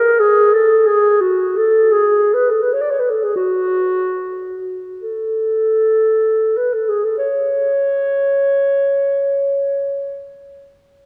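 A dark, distant solo clarinet sits up front in this yearning, meditative classical passage cut from a longer piece, moving freely through the middle of its range with expressive rubato and slowing down over the first 7.2 seconds before falling silent at 10.4 seconds, all wrapped in a roomy church reverb.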